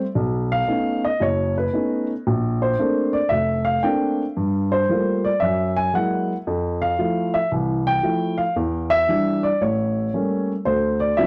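Solo jazz at 114 BPM in a swung 4/4, with a playful, warm mood, cut from a longer piece. A dark, mellow baby grand piano plays alone and sits up front from 0.0 to 11.3 seconds, moving through rich extended chords such as Bbmaj9, Gm9 and A7b9 before settling on Dm11. The sound is dry and close, with a small room ambience that recalls a 1970s studio session.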